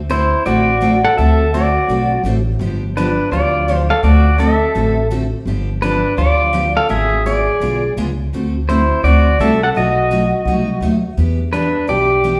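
Down-home and cheerful, this short cut from a longer western swing number rolls along at 168 BPM in 4/4, with a 63% swing on the eighths and a D mixolydian flavor. Up front, the pedal steel guitar carries the melody between D4 and F#5, its clean, twangy, compressed tone shaped by fingerpicks, slide and volume swells. The upright bass, also up front, is plucked on steel strings and sounds woody, dark and growly as it holds down the low end from G1 to E2, starting at 0.0 seconds. A picked dreadnought acoustic guitar fills in the accompaniment, bright and full-bodied, with an audible finger squeak. The harmony moves from D9 to G7 and back, slips through G#dim7, then heads to B7 and Em7 by 11.2 seconds. The trio plays live together in one large studio room, and a generous reverb gives the whole performance a roomy, spacious sound.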